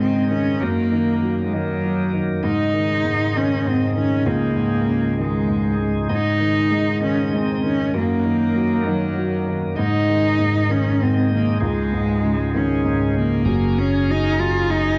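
A bowed solo cello carries the melody up front, its tone focused and smooth on top with vibrato, giving this romantic, tender pop excerpt its voice. Beneath it, a dark, woody upright piano plays a mellow accompaniment with a cassette-tape color, while a reedy, bright tonewheel organ holds clean sustained chords through a slow rotary speaker, its key click audible. The music moves in an unhurried 6/8 at 65 BPM, counted in dotted quarters, cycling through Absus4, Ebm/Gb and Dbsus2 harmonies. At 13.5 s a round, punchy fretless electric bass enters on a low Gb as the harmony settles onto Gbadd9, opening a new section. A lush hall reverb surrounds the ensemble, and the whole excerpt carries the intimate, homemade feel of a cassette recording.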